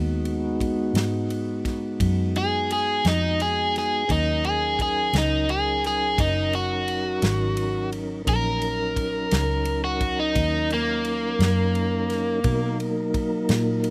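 A bright, compressed, up-front overdriven electric guitar carries the melody from 2.4 s in this brooding, mournful slow blues in Eb minor at 57 BPM in 12/8, over a soft, flute-like tonewheel organ holding sustained Abm7, Ebm7 and Bmaj7 chords through a slow rotary speaker, a dark, round, foam-muted fingered electric bass, and an airy, polished acoustic drum kit with punchy kick, ride cymbal and a medium-tuned snare, captured dry outdoors.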